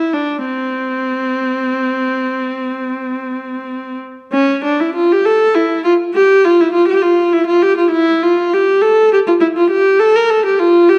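In a flowing, rubato 12/8 lilt, this serene and radiant baroque-style suite movement features a single bowed viola, placed up front with a warm, soft-attacked tone, expressive vibrato and gliding portamento. The viola moves within a middle register, shifting into a new section at 4.3 seconds. A dark production and a lush recital-hall reverb surround this brief passage drawn from a longer piece.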